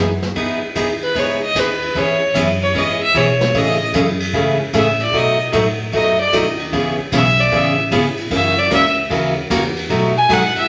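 A large, wet studio reverb surrounds this short down-home western swing excerpt in E major, moving at 151 BPM with a swinging eighth-note feel. A clear, intense bowed fiddle with light vibrato and a smooth top sits up front and carries a solo from 0.4 seconds to the end, over a bright, full-bodied picked steel-string acoustic guitar with audible finger squeak. Underneath, a woody, growly pizzicato upright bass and a jazz kit played with brushes, with dark cymbals and a boomy kick, keep time through a progression that runs from Emaj7 to B7.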